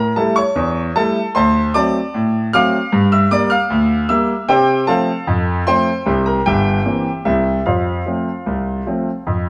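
A solo concert grand piano opens this cheerful, lively ragtime fragment, cut from a longer piece and running 9.5 seconds. It moves at 76 BPM in a straight 2/4, in F major, with the instrument tuned to A4 = 445 Hz. The piano spans G1 to F6, and its tone is clear and open, with a deep bass and an up-front presence. The harmony travels from A7 through D7, Gm and F/C to C7 before settling on F at 7.7 seconds. A stone room reverb with a 1.1-second decay surrounds the piano, giving the feel of a live performance in a single room.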